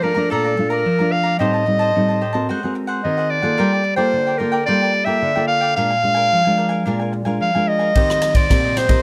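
A clear, classical-style clarinet leads this lively, bittersweet samba and choro piece as the solo voice up front, carrying the melody between A4 and F5 at 110 BPM in a straight 4/4. Beneath it, a thumb-plucked nylon-string guitar sits forward in the mix with a warm, classical tone. A picked cavaquinho adds crisp, quieter accompaniment higher up. The harmony moves through Bbmaj7, Am7b5, G#9 and Gm9, then Bb7, and arrives on Eb6 at 8.0 seconds. At that moment a swinging big-band drum kit enters, airy and polished with a hall sound, bringing a punchy kick, ride cymbal and rim click up front. Close, detailed microphones and light reverb frame this 9-second passage, cut from a longer piece and tuned to A4 = 438 Hz.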